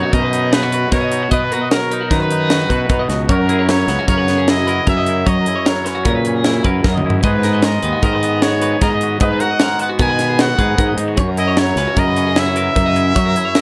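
A vibrato-laden trumpet carries a playful, wistful pop-style melody up front from the first instant, over a twangy electric guitar tucked in the background, bright, clean twelve-string arpeggios and a growly, fuzz-overdriven fingered bass, while a crisp, punchy fusion kit with a high-tuned snare drives this dry math rock and midwest emo fragment in 5/4, with a fill at 6.8 seconds as the chords move from Bmaj7 through F#7 and G#m7.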